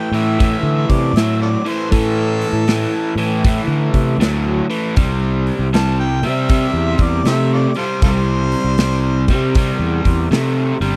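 A dry, close studio sound with a 1970s feel frames this gritty, smoky excerpt of blues rock and southern rock, swinging at 79 BPM in 4/4. An overdriven harmonica carries the solo melody with vibrato, tongue slaps and scooped notes in a jazz style, set over a double-tracked, picked guitar riff, a growly, fuzzed fingered bass and a big acoustic drum kit with a punchy kick and medium-tuned snare. The harmony moves from A5 to C at 5.0 seconds, with the harmonica falling silent at 9.5 seconds while the band plays on.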